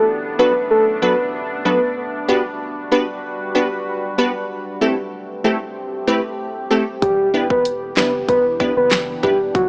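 A straight 4/4 dancehall groove at 95 BPM in E minor, tough and sultry, rests first on a deep, moody ambient pad that pumps beneath chorus and its own reverb, while a crisp, detuned wavetable chord stab sits up front over Bm7/F#, Gmaj7 and Am7. A round, octave-layered synth lead with vibrato, chorus and tape echo sings briefly at the opening, then returns at 7.0 seconds as the chords land on Em7, joined there by a punchy, layered pop drum kit with fat snare, handclaps and hi-hat, and a boomy 808-style bass in the background. The mix has light digital ambience and a dry, gritty, small-speaker sound.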